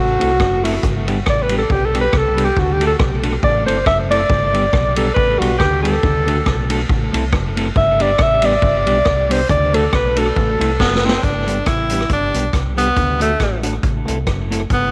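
A small, lightly reverberant room frames this bouncy, joyful ska excerpt at 138 BPM in G major, swung gently over a chord loop that cycles through Am, G and D. A breathy, mellow alto saxophone carries the melody up front with light vibrato and tape echo until 11.2 seconds, riding on a round, deep dub fingered bass, a clean, softly chorused electric guitar, and an acoustic street-band drum kit with a boomy kick, high-tuned snare and dark cymbals. A drum fill at 10.8 seconds hands the lead to a clear, smooth-topped tenor saxophone that carries the melody to the close.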